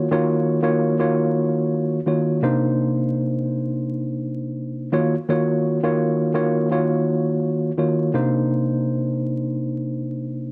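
Moody and dark, this brief hip hop fragment cut from a longer piece sits at 84 BPM with a lightly swung 16th feel, as a worn, slightly out-of-tune tine electric piano plays alone, clean and up front, filtered at both ends, through Ebm9 and Cm9 chords, bathed in a moderate plate reverb with vinyl crackle in a dark, warm production that shifts to a new section at 8.1 seconds.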